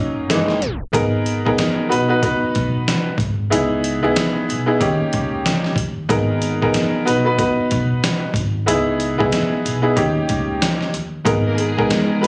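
Swung sixteenths in a gritty, compressed sampler-style boom-bap kit with a thumpy kick and fat snare drive this reflective, dark hip-hop fragment, with a worn, slightly detuned upright piano carrying cassette-tape colour up front, a woody pizzicato upright bass underneath, a tape stop catching the opening at 0.6 seconds, and lush bowed strings with delay slipping in at 11.5 seconds, the whole mix heard as if captured on a phone in a small room with club reverb.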